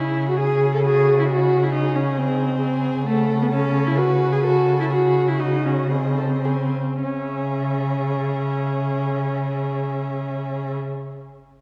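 Heard from further back in a reverberant concert hall with a faint mains hum, this dramatic, urgent fragment of a quick classical-period string quartet movement in C# minor runs at 102-137 BPM in a rubato 4/4, with a smooth, even viola and a rich, expressive cello with soft attacks and portamento sitting up front, a dark, woody second violin carrying the second line, and the first violin's focused, vibrato-laden melody in the background, the tempo slowing from 2.2 to 7.0 seconds before a new section begins at 7.0 seconds.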